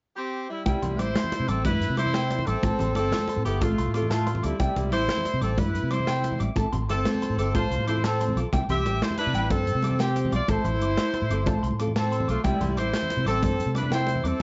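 Highlife guitar band in a danceable 12/8 at 122 BPM in C major, where a punchy, tight horn section carries the melody up front from 0.2 s, joined at 0.7 s by a breathy, jazz-style alto saxophone second line in the background, a woody, fingerpicked nylon-string guitar, a slightly broken-up electric guitar playing high arpeggios through tape echo, a round, up-front fingered electric bass, a gritty, saturated breakbeat drum kit with a punchy kick, and ringing congas, all cycling warmly through C, Am and F/A under light reverb.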